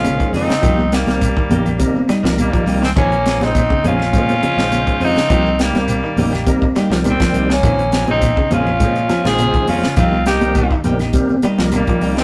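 Funky and intense, this afrobeat excerpt puts a breathy, raspy tenor saxophone up front on the melody, with a growling, bright trumpet playing a second line in the background over a tight funk drum kit with a high-tuned snare and a fingered electric bass, as the harmony moves between Bbm9 and Cm7. A fat, lightly overdriven tonewheel organ with key click, chorus vibrato and slow rotary speaker adds percussive accompaniment, while a twangy guitar at the edge of break-up plays arpeggios and a clean electric guitar enters at 0.3 seconds with picked stabs. Hard-hand, ringing congas, a grainy shekere and faint woody claves fill out the percussion, all caught in a rough rehearsal-room recording with tube saturation and a moderate stone-room reverb.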